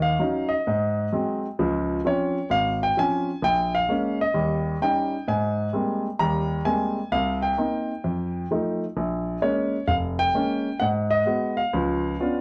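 Solo jazz at 130 BPM in a swung 4/4, this cool, late-night excerpt features a polished, up-front grand piano alone for its 12.4 seconds, ranging from F1 to Bb5 through a light reverb as it moves through chords from Ebm7 and Dbmaj7 to Abmaj9 and a closing Db7b9, tuned slightly high to A4 = 445 Hz.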